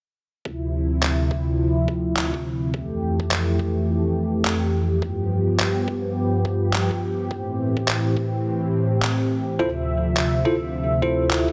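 Gritty and swaggering, this glitch hop excerpt moves at 105 BPM in 4/4 with a 16th-note swing, sitting in D dorian. A smooth, detuned sawtooth analog pad holds sustained chords from 0.4 seconds, its soft attack colored by chorus, a moving notch and sidechain pumping as it cycles through Dm9, Fmaj9, G7 and Am7 before returning to Dm9. Beneath it, a sampler-style electronic kick drum lands thumpy and pitched down, high-pass filtered and compressed, while pitched-down electronic handclaps sit up front with a tape-warm grit and a touch of studio ambience. At 9.6 seconds a bell-like tine electric piano enters with clean, direct stabs, carrying subtle chorus, sidechain pumping and tape echo. The whole mix is wrapped in a moderately lush hall reverb that gives it a digital sense of space.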